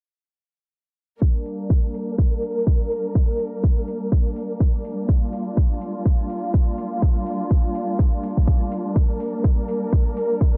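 A punchy, layered electronic kick and a dark, lush symphonic string section enter together at 1.2 seconds on a G minor chord, the bowed ensemble holding sustained chords with expressive vibrato and a smooth top, shaped by sidechain pumping. Bright hi-hats sit far in the background from 1.5 seconds in this swaggering, bouncy bass house passage at 124 BPM, driven by a 58% swing on the sixteenths. The dense, heavily limited, nearly dry mix runs under a filter sweep until the strings stop at 10.6 seconds, clearly cut from a longer piece.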